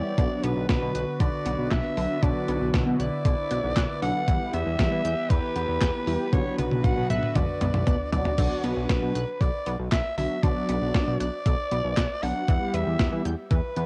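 Cassette-worn and lightly reverberant, this nocturnal, melancholic synth-pop excerpt in B minor at 117 BPM sets a raspy, growling soprano saxophone melody with tape echo over round, dark synth brass, a swirling phased analog pad that stops at 8.4 seconds, a squelchy resonant blip pluck arpeggiating in the background, a fat detuned analog bass, and a thumpy, up-front 12-bit drum machine with handclaps that plays a fill from 6.3 seconds as the chords move between Bm and Em.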